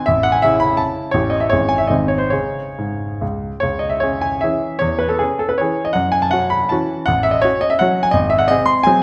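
This classical piece is a romantic triple-time dance with dotted rhythms, capricious and nostalgic in mood, played with a pliant rubato on solo baby grand piano. The instrument sounds clear, natural and up front, its short sustain set in a moderate recital-hall reverb. The opening phrase returns at 3.6 s in this brief fragment of a longer work, its harmony drifting through minor chords toward a dominant seventh near the close.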